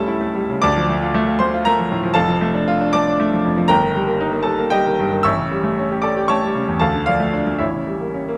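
A clear baby grand piano carries this stormy, agitated fragment of a virtuoso classical study alone, sitting present and up front across its 8.4 seconds. The music is in D minor and moves in 6/8 at about 78 dotted-quarter beats per minute, with uneven beats and a pushing, pulling rubato that heightens the restless mood. The keyboard writing spans from F1 up to E6, so deep bass notes and bright upper-register figures share the texture. The harmony opens on A7/C#, settles onto Dm at 0.6 seconds, darkens through an Eb/G chord, and closes on a tense A7b9 at 7.6 seconds. A moderate recital-hall reverb lends the piano a sense of space, while the sound itself stays clear and close, cut short as part of a longer piece.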